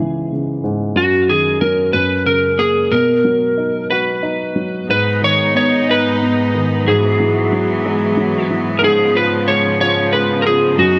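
Pop in a heartfelt, romantic mood, moving at 61 BPM in a straight 6/8 and cut from a longer piece. A dark, woody upright piano carries the accompaniment from the start. At 1.0 s an electric slide guitar, played with fingerpicks and slightly broken-up, takes the melody through a digital delay, over chords that move from C#m through Bmaj7 and G#m to C#7/G#. A clear, earthy studio string section enters at 4.9 s with bowed, sustained chords and light vibrato, all set in a moderate plate reverb.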